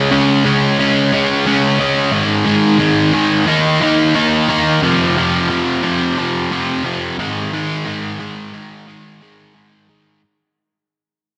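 Drenched in a lush hall reverb with a big arena sound, this short cut from a longer rock piece features a lone overdriven electric guitar, double-tracked, picked and placed up front with a warm, gritty edge. At a straight 89 BPM in 4/4, the mood is aggressive and driving as the guitar moves through Db5, Ab5 and Eb5 chords, reaching F5 at 4.8 seconds. A fade-out then runs from 4.8 to 10.2 seconds as it returns to Ab5.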